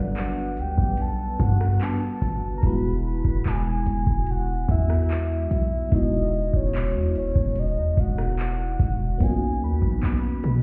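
Heard muffled, as if through a wall, with a stony room character, this short excerpt of contemporary R&B moves at a relaxed 73 BPM in a straight 4/4, tuned slightly flat to A4 = 436 Hz. The mood is romantic and smooth. A booming analog drum machine enters at 0.2 s with a deep kick, metallic hi-hats, handclaps and rim clicks, overdriven and placed up front, while a boomy, sine-based 808-style bass sits equally forward underneath. An FM electric piano blended with a soft pad supplies lush, dreamy, detuned chords treated with chorus and phaser. Above it, a round, dark octave-layered synth lead carries the melody with a sub octave, vibrato, chorus, tremolo and delay. The harmony glides from Gmaj9 to Emaj9 at 2.6 s and lands on Bmaj9 at 9.2 s.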